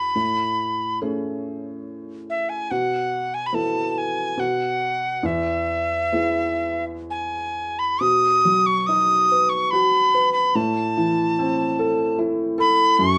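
Wistful and nostalgic, this Celtic slow air drifts in a rubato 3/4 at roughly 62-75 BPM, tuned a touch sharp to A4 = 444 Hz. A metal whistle carries the melody, spanning E5 to D#6, its breathy, bright, reedy tone sitting close and up front, with vibrato, tongued notes and an audible chiff. Beneath it, a felt-muted upright piano supplies the accompaniment between E2 and B4, its mellow, intimate, vintage sound softened by thin felt. The harmony moves from Amaj7 through B7sus4 to a brief pause in the chords before settling on E. At 8.0 seconds the second section turns to B and then a darker Am. Both instruments play throughout this 13.2-second excerpt from a longer piece, performed live in one room with a wet studio reverb.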